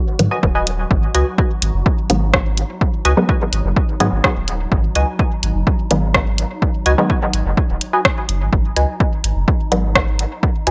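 A straight 4/4 pulse at 126 BPM is driven by a punchy, overdriven electronic kick and an up-front deep house kit of hi-hat and rim click, giving this hypnotic, cavernous dub techno excerpt in G# minor its steady footing. A round, soft sub bass pumps beneath, while two muted chord stabs on a G#m7 chord carry chorus and dub echo, a detuned one in a lower register and one playing a higher riff, with a filter sweep running across the synth stab for the full 10.7 seconds. Behind them sits a dark, airy, breathy wind-like noise texture with its own built-in reverb, all set in a light room reverb.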